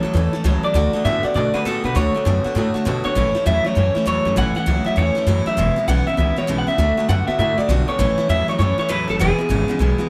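Set in a moderate studio room, this short rockabilly excerpt swings along with a retro, rollicking mood, driven by a woody, thumpy upright bass on gut strings that sits up front. A lo-fi, twangy electric guitar through a small old amp carries the melody up front with a touch of analog delay, while a second, brighter and slightly broken-up electric guitar plays a low riff. A full-bodied dreadnought acoustic guitar fills in the accompaniment over chords moving among A, D and E.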